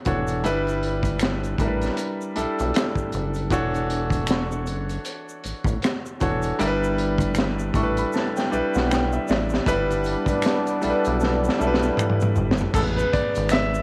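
An intimate grand piano with audible action noise accompanies this smooth neo-soul R&B excerpt over a rubbery, wave-folded square bass, a gritty, dark breakbeat kit with a high-tuned snare and tight kick, and close egg shaker and finger snaps in a spring-reverb space, while a vintage jazz-style trombone section adds stabs from 9.7 to 12.3 seconds before the piano takes a brief solo at 12.7 seconds.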